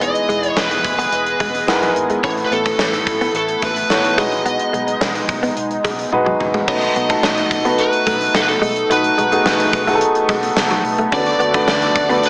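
1980s-style pop with a romantic, uplifting mood, where an overdriven lead guitar through a small cranked amp carries the melody up front with tape echo over a warm concert grand piano (which plays a fill from 1.4 to 2.2 seconds), a shimmering chorused pulse-width pad, a compressed clean electric guitar riff with analog chorus, a dark, round, foam-muted fingered bass and a gated 80s drum kit with bright cymbals and a fill from 6.1 to 6.7 seconds, all set in a lush hall reverb with a small-speaker sound.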